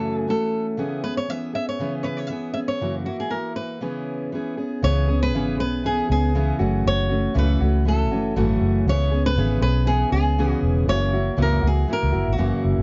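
Acoustic pop in C# minor at 119 BPM, tender and wistful, with a light swing on the sixteenths and a tuning pitched slightly above standard at A4 = 445 Hz. A full-bodied, fingerpicked steel-string dreadnought carries the accompaniment from the start, while a bright flamenco guitar with fresh strings sings the melody between F#4 and E5, its fingers squeaking audibly on the strings. At 4.8 seconds a vintage foam-muted electric bass enters, round and amped, sitting low between E1 and C#2 and giving the second half more weight. The harmony circles through F#m7, C#m7 and F#7, and all three instruments sit up front in a dry, dark production that rolls off the highest frequencies. The recording is cut from a longer piece, with the melody stopping at 12.6 seconds just before the others.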